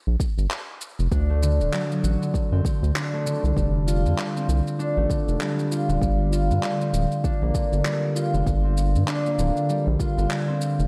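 Organic downtempo in G minor at 98 BPM, this short cut from a longer piece feels earthy and meditative, moving with a swung sixteenth-note lilt in 4/4. A round, dark analog bass sits up front from the start, its deep, wave-folded tone ranging from D1 to G2 with a fast attack and sustained notes. An overdriven electronic kick drum, layered and re-recorded in a small room, gives a deep pulse, while a quieter electronic shaker and handclaps add gritty, overdriven texture. At 1.1 seconds a fingerpicked concert harp enters with ringing arpeggios between D3 and F#4, up front and trailed by a diffuse ambient delay. The harmony moves from Gm7 through D and F before returning to Gm7 at 6.0 seconds, and a lush hall reverb with a 2.1-second decay soaks the mix in a dreamy haze.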